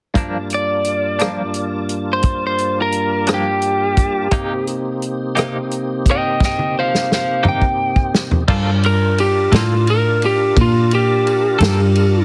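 This is a soulful, mournful slow blues in G minor at 58 BPM in a straight 12/8 feel, cut from a longer piece and opening on a clean, hollow-bodied semi-hollow electric guitar with tremolo, joined almost at once by a tonewheel organ holding sustained chords through a slow rotary speaker, light overdrive and chorus vibrato. A soul drum kit with a tight kick, medium-tuned snare and dark cymbals sits up front yet carries a roomy, distant air, while a lightly driven lead guitar, twangy and slightly broken-up, sings the melody from 0.5 seconds. The harmony moves from Gm7 to Cm7, and a drum fill starting at 6.4 seconds leads into a new section at 8.5 seconds, where the chord shifts to Gm9. There the lead guitar takes a solo and a foam-muted vintage fingered bass enters, round, dark and punchy. The whole mix has a heavily compressed, radio-like sound with light studio reverb.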